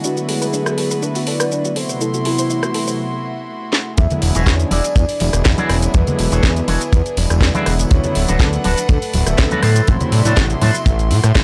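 A fat, thick analog bass sits up front in this feel-good, groovy nu-disco excerpt. It is detuned sawtooth, tube-saturated and evolving under a filter sweep, and it arrives with a dry, tight kick drum and small-room congas and tambourine at the drop at 4.0 seconds. Before that, a layered electronic house kit with a cracking snare, metallic hats, rim click and shaker drives a straight 122 BPM groove in E mixolydian. A smooth sawtooth pad with chorus and cassette-tape colour carries chords from D6 and Am6 to E9, and a rich, earthy chamber string section holds sustained chords that pump against the sidechain. A soft, round pluck spins gritty 12-bit arpeggios through analog delay for the first 2.9 seconds, while a dark, full-bodied octave-layered lead sings the melody through phaser and delay. At the drop, a bright, twangy envelope-filtered electric guitar adds a clean picked riff, and the whole track has a dry, gritty hardware sound with a small room reverb.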